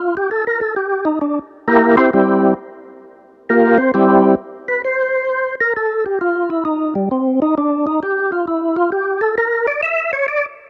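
Swung eighth notes in a steady four give this short jazz excerpt, cut from a longer piece, a swinging, soulful lilt. A percussive tonewheel organ carries the whole passage alone from 0.0 to 10.5 seconds, playing a solo that stays between G3 and E5. Its tone is fat and lightly overdriven, with second-harmonic percussion and key click, while a slow rotary speaker and chorus vibrato add gentle motion to the sound. The line opens unaccompanied by chords, then moves through C7, Gm7 and C before dropping back to an open, chordless stretch at 4.8 seconds. Recorded dry and close in a 1970s studio style, the organ sits up front with little room sound around it.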